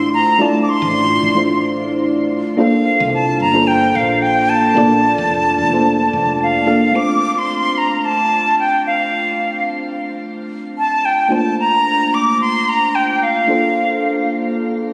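A straight 4/4 pulse at 110 BPM carries this smooth sunset chillout passage in D minor, tuned a little flat with A4 at 437 Hz and cut from a longer piece. A mellow FM electric piano holds the accompaniment throughout, its soft, round tone with a noise layer, quick attack and decaying notes thickened by chorus, shimmer reverb and digital delay. Above it, a breathy, bright silver concert flute sings the melody up front with vibrato and a gentle onset, trailing its own shimmer reverb and delay before it ends at 14.3 seconds. A woody fretless electric bass, dark and hollow-bodied, plays a low line beneath them until it stops at 6.9 seconds, where the second section begins. The harmony moves from Dm9 through C13sus4 to Bbmaj9, then returns by way of Dm7 to the same two chords. The whole take sits in a wet scoring-stage reverb with studio ambience and compression, captured on a phone in the room, giving it a warm glow.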